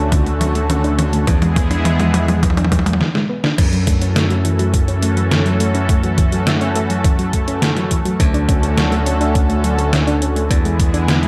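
This cinematic, nocturnal synthwave passage in F# minor opens at once with a lush, airy sawtooth pad holding sustained chords, drenched in chorus, phaser, shimmer reverb and a sidechain pumping that gives it a breathing pulse. Beneath it a soft, round pluck spins arpeggios from the background, its tone dark and decaying with a moving notch, while a filter sweep sweeps across it through the opening 3.6 seconds and digital delay trails each note. A bright, growly picked electric bass anchors the low end, and the drums arrive at 0.1 seconds with a fill from a detuned 8-bit drum machine, its fat, overdriven snare placed up front with gated reverb alongside crash, hi-hat and toms, together with a thumpy, overdriven electronic kick. After a brief break ending at 3.6 seconds, the groove settles in at a steady 104 BPM in straight 4/4, moving from Dmaj7 and E7 into a long stretch on F#m7 before returning to Dmaj7 and E7. 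The kick drops out at 10.9 seconds as this cut from a longer piece closes, all set in a light reverb.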